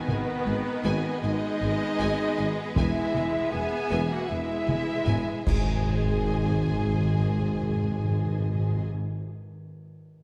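A dark, roomy scoring-stage reverb frames this dramatic, brooding fragment of an epic orchestral film cue in G# minor, moving at a slow 78 BPM in 4/4 as the harmony shifts from G#m to E and then to a G# major chord. Two violin sections carry the melody and a second line with a hollow flute section, over an accompanying viola section, while a full string section and mellow French horns hold sustained chords and woody cellos, a tuba and a double bass section anchor the low end. Heavy-stick taiko drums drive the rhythm with a close, dry punch and build a fill into the 5.9 s accent, while bright clash cymbals with concert bass drum and round, soft-mallet timpani join at 5.5 s, just ahead of that accent.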